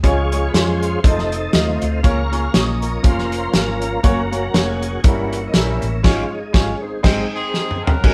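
A smooth tonewheel organ takes the lead in this hopeful, soulful uptempo gospel excerpt in Db major at 120 BPM, its sustained chords shimmering through a slow rotary speaker and chorus vibrato over a lightly swung 4/4 groove. A clear, intimate baby grand piano with audible action noise, a round, punchy hollow-body electric bass and an up-front soul drum kit with dark cymbals and a tight kick play together live in one room with light reverb, the band hitting accents from 6.0 seconds. A distant, tight horn section with light vibrato enters at 7.3 seconds, shortly before the drums roll into a fill at 7.5 seconds.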